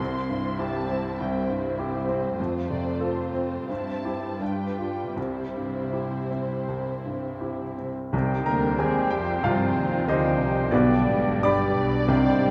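Set in a reverberant recital hall, this lush, lyrical excerpt from a romantic movement for piano and orchestra features an intimate, clear baby grand carrying the rubato melody, its action noise audible, over veiled con sordino violins, a close studio violin section on a second line, distant violas and soft-edged cellos, until at 8.1 seconds a fuller orchestra joins with airy flutes, a warm oboe, a very quiet clarinet, a mellow bassoon, muted double basses and a brief, round touch of soft-mallet timpani, and a dark, distant French horn section adds sustained chords from 8.5 seconds.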